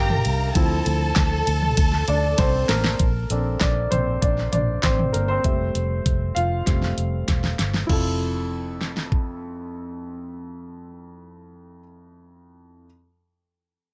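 Anthemic and uplifting, this piano-driven pop excerpt puts a natural-sounding baby grand piano in front, carrying solo passages with plate reverb over a dark, round, foam-muted electric bass. A lush, bowed violin section with expressive vibrato adds a second line through delay and plate reverb until 3.0 s. A layered, produced pop drum kit with a knocking kick, fat snare, handclaps and cymbals sits close and plays fills at 2.4 s and 6.7 s, as the harmony moves from Gm and Dm7 to Bbmaj7 and Fmaj7.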